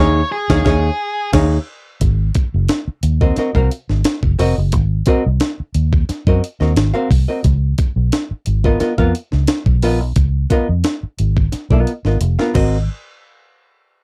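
A dry, close 1970s-style studio sound frames this strutting, gritty funk excerpt at 88 BPM in Ab mixolydian, which opens on a band accent over Eb9sus4 as a fuzz-distorted octave lead guitar plays a brief melody that ends at 1.3 seconds. An up-front, foam-muted fingered electric bass, round and punchy, anchors a dark, clean, hollow-bodied archtop guitar moving through Ab9 and Db13. A compressed, pitched-up breakbeat kit with a thumpy kick, high-tuned snare, hi-hat and crash enters at 0.5 seconds, and a drum fill from 12.2 seconds leads back to Ab9 before the band stops.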